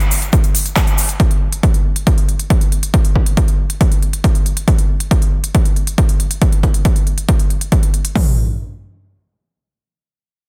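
Emotional and soaring, this trance fragment, cut from a longer piece, is built from percussion in straight 4/4. Two overdriven, layered big-room dance drum kits, both electronic and re-recorded in a large room with crisp hats, drive it. One is quieter, with handclaps and hi-hat from the start, and the other sits up front from 0.3 s with a punchy kick, hi-hat and toms, while a grainy, bright acoustic tube shaker plays close and dry in the background until 1.2 s, all within a dense, heavily limited modern master with little reverb.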